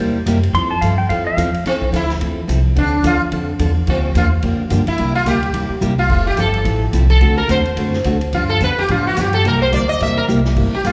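A buzzing, shimmering sitar, plectrum-plucked with its sympathetic strings ringing, sits up front with a slapback echo and carries the melody from 1.7 seconds in this playful, down-home western swing. Just before it arrives, a bright, twangy lap steel guitar plays a short, compressed slide line with its own slapback echo between 0.5 and 1.6 seconds. Beneath them, a picked dreadnought acoustic guitar with fresh strings supplies swung accompaniment, while a woody pizzicato upright bass holds down the low end. A natural-sounding big-band drum kit, with a punchy kick and medium-tuned snare, drives the swing using hi-hat, ride, crash and toms, and it adds a couple of drum fills. The chords move through a country progression of C7, Fmaj7, Dm7, Gm7/D, D7 and G7, and the whole thing comes across like a live club gig heard through the venue's PA, with light reverb and a small-room ambience, cut from a longer piece.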